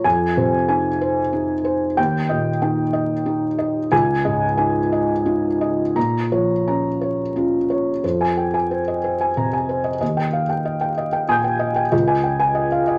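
A felt-muted upright piano plays alone and up front, dark and intimate, its thick felt and audible action noise set in a wet studio ambience dusted with vinyl crackle, in this melancholic neoclassical minimalist piece in F minor that moves rubato in 6/8 at 61 BPM through Fm7, Eb, Dbadd9 and Bbm before a second section at 8.0 seconds returns to Fm7, Eb and Dbadd9.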